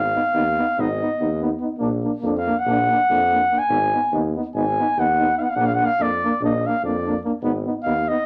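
A driving 9/8 pulse counted in eighths at 288 BPM sets this fiery, virtuosic Balkan folk brass excerpt in Ab dorian sharp4, with the harmony alternating between Abm and Bb across its 8.3 seconds. A punchy, up-front flugelhorn carries the solo melody from start to finish, while a smooth-topped tuba with light vibrato holds the bass line beneath it. A clear, close-miked trombone and a distant, roomy euphonium fill out the accompaniment in a lively club reverb.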